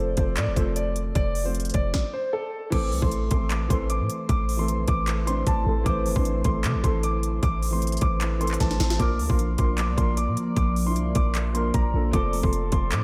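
Two dark, vintage pianos and a deep, boomy 808 bass open this menacing, hard-hitting hip hop and trap track at 153 BPM in a half-time feel in A phrygian, with a chorused baby grand carrying the melody through diffuse delay over a smooth concert grand accompaniment. They are soon joined by an overdriven, up-front drum kit of hard-clipped kick, sharp snare, crisp hats, handclaps and crash that halts in a stop at 1.9 s before a glassy, warbling FM pad slips into the background at 3.6 s, the whole mix soaked in dreamy plate reverb.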